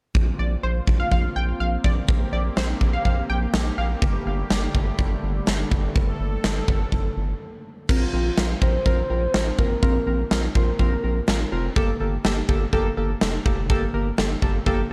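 Synth-pop at 124 BPM in a straight 4/4, this short cut from a longer piece carries a nocturnal, melancholic mood over a dark production with little reverb, moving between Bbsus2 and Gmadd9. A huge, up-front acoustic arena drum kit with a punchy kick, medium-tuned snare, bright crash cymbal and a pumping hall room drives the track, while a round, deep analog bass holds the low end throughout. In the first half, a brassy, bold sawtooth pad with a filter sweep and chorus sustains chords, and a funky, detuned polysynth comp with ring modulation, a plucky filter, chorus and delay adds a punchy second line until 3.9 seconds. After a brief break, a soft octave-layered synth lead enters at 7.9 seconds, carrying the melody with a full, triangle-based tone, sub octave, vibrato, chorus and delay. Analog keys with a filter sweep and decaying notes join at the same point and accompany to the end, giving the closing stretch a warm, round colour.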